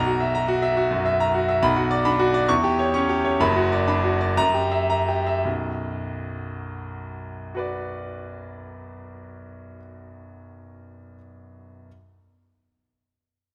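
A classical virtuoso piano study in B minor, this brief excerpt carries a stormy, passionate mood in 6/8 metre, moving with free rubato at roughly 54-71 BPM counted in dotted quarters. A clear grand piano plays alone throughout the 11.9 seconds, spanning F#1 to C#6 with a natural, up-front presence. The harmony opens on F#7 over a B bass before settling onto B minor at 1.6 seconds, then passes through a diminished chord and an F#7b9 that pulls back to B minor at 5.4 seconds, where a second section begins. Across the opening stretch the tempo slows from 0.8 seconds onward, heightening the sense of turbulent yearning. A moderate scoring-stage reverb gives the instrument an open, spacious bloom around its direct sound.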